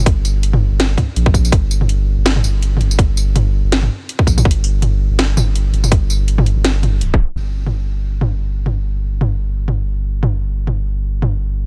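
Tense and heavy, this half-time drum and bass fragment in G minor moves at 164 BPM in 4/4 with a light swing on the sixteenths, cut from a longer piece. A deep, thick saturated sub bass sits up front from the first moment, its sine-like tone holding long, fast-attacking notes between D1 and Bb1 through to the end at 11.7 seconds. The drop opens the track, driven by a tight, overdriven electronic kick and a layered kit of cracking snare, bright hi-hats, tambourine and toms, also with overdrive and placed close in the mix. Around 7.0 seconds a tape stop drags the ambience down, and the kick falls away by 7.3 seconds as the second section begins. From there the kit and the sub bass carry on, the drums stopping at 11.3 seconds while the bass holds a moment longer.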